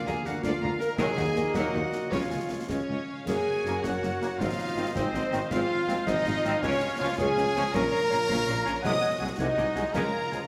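A dark French horn section stands out in this swashbuckling, adventurous stretch of heroic film score, holding sustained chords in 6/8 at 108 BPM with a distant, roomy tone. Above it, a warm, expressive violin section carries the melody with vibrato and a soft attack, supported by a second, richer violin line, a pure silver flute and a bright oboe, while a very quiet, distant clarinet joins the countermelodies at 3.3 seconds. A clear trumpet punctuates with stabs, a vintage-toned trombone section adds quiet sustained harmony, and a rich viola section fills in the accompaniment as a concert harp rings out bright, fingerpicked arpeggios. The bass is anchored by a focused cello section, a lush double bass section and a roomy tuba, with concert snare, bass drum and bright clash cymbals sounding close and dry, plus a brief, articulate timpani stroke at 1.0 seconds. The harmony moves through E-flat minor, G-flat, A-flat and B-flat minor before settling on D-flat, all bathed in a wet recital hall reverb in what is cut from a longer piece.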